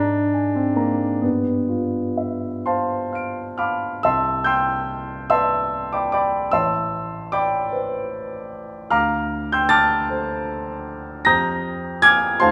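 Serene and hazy, this short passage of impressionist solo piano drifts in 6/8 with a freely breathing rubato. A warm grand piano plays alone throughout its 12.5 seconds, spanning from A1 up to D7, its tone present and polished with long sustain that lets each chord hang in the air. The harmony glides through lush extended colors, opening on Absus2 and G13 before shifting at 4.0 seconds into a second section that moves through Cmaj9, Am11 and Dm9, settling on a darkened Fm9. The piano sits up front in a wet recital hall, whose reverb blooms around the notes and adds to the dreamy, suspended atmosphere. It feels like a fragment lifted from a longer, contemplative piece.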